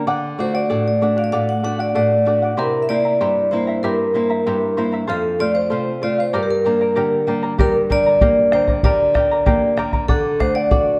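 A dark production set in a reverberant recital hall frames this earthy, wistful Andean folk passage in 2/4, where an up-front vibraphone carries the melody with a metallic, ringing tone, fast motor vibrato and slapback echo over a fingerpicked, shimmering double-strung charango and a small, fresh-stringed nylon-string guitar, before a deep, close and dry bombo joins at 7.6 s.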